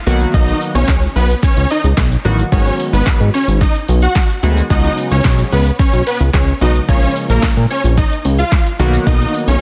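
Dance-pop at 110 BPM in a straight 4/4, bittersweet yet energetic, with a lush, huge supersaw chord melody entering at 0.3 s over glossy chorused retro synth keys, a mellow, up-front detuned synth bass and the synth layers pumping with sidechain, all driven by a deep house kit of deep kick, punchy snare, handclaps, hi-hat and shaker, while a very quiet, hollow group handclap sits close and dry from 0.9 s, moving through Bmaj7, G#m7, C#7sus4 and A#m7 in a dense, heavily limited mix with light reverb.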